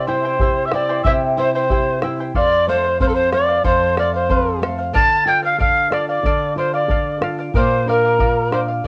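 This is a home recording on cassette, set in a small, reverberant room, and it is cut from a longer Andean folk piece in 2/4 with an earthy, melancholic mood. Up front, a polished pan flute carries the melody with a woody, breathy tone, gentle vibrato and a soft attack, coloured by a cassette-tape character of its own. Above it, a mellow cane quena plays a tongued, expressive second line with its own vibrato. A fingerpicked charango adds a shimmering layer of double strings, some doubled at the octave, while a thumb-plucked classical nylon-string guitar supports the harmony underneath. A deep, dark bombo, close and dry, joins at 0.4 s, and the chords move from C to F, then D minor and B flat.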